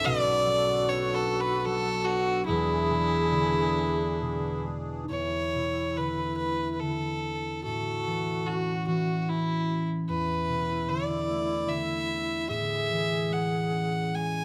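In a rubato 3/4 around 66-76 BPM, this nostalgic, pastoral Celtic slow air in E mixolydian unfolds over chords such as Bm7, E7sus4 and Amaj7, with an up-front, earthy fiddle carrying the melody in a bowed, smooth-topped line with light vibrato. A mellow, airy wooden baroque flute adds a soft-attacked, slightly unsteady second line, while a thumb-plucked concert harp rings close by in accompaniment. A reedy, sweet accordion holds sustained chords with a light tremolo tuning in the background until 5.1 s, and the whole is caught by close, detailed microphones in a moderate recital hall.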